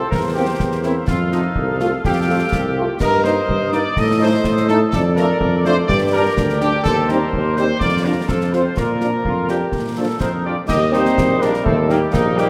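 This military-style march for wind band strides along at 125 BPM in 2/4 with a festive, proud air. The punchy trumpet section carries the melody up front over a roomy tuba bass with vibrato, while a clear, close-miked woodwind section adds a second line and concert snare, bass drum and dark-toned clash cymbals sound close and dry. Very quiet, soft-attack French horns and dark trombone chords sit distant in a concert hall's lingering reverb, and a smooth-topped euphonium slips in behind at 10.2 seconds as this cut from a longer piece moves through chords from C7/E toward a closing Eb.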